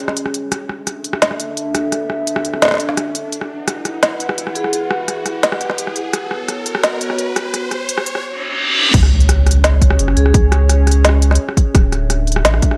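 Half-time drum and bass at 171 BPM in C# phrygian, heavy and cinematic, this excerpt from a longer piece opens with a dark, detuned analog pad sustaining chords through chorus, phaser and sidechain pumping, while a woody-snared, tape-toned electronic drum kit with smooth hats sits up front and a riser climbs under a filter sweep toward a reverse cymbal. Faint, metallic vibraphone notes ring through 12-bit grit and tape echo at 4.6 and 10.2 seconds. At 8.9 seconds the drop lands with an impact, a hard-clipped overdriven kick and a thick, tube-saturated sub bass, all set in light digital ambience.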